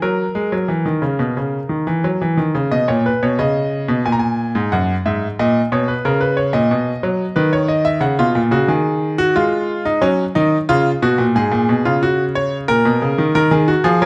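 Close, detailed microphones place a bright grand piano up front in a recital hall, where a moderate reverb lets its long sustain ring while the audible action noise gives the sound an intimate, present quality. This fragment of a longer classical piece is a baroque-style two-part invention for solo piano in a straight 4/4, and its mood is contemplative and serious. The piano alone carries both voices across a range from F#2 to A#5, with a brilliant tone throughout. A brief opening section gives way at 2.7 seconds to a longer passage that moves through harmonies such as F#9, A#madd11 and G#5 before reaching C# and then settling on F#/C#. The recording is cut at 14.1 seconds, just after the harmony turns to Ebm at 13.4 seconds.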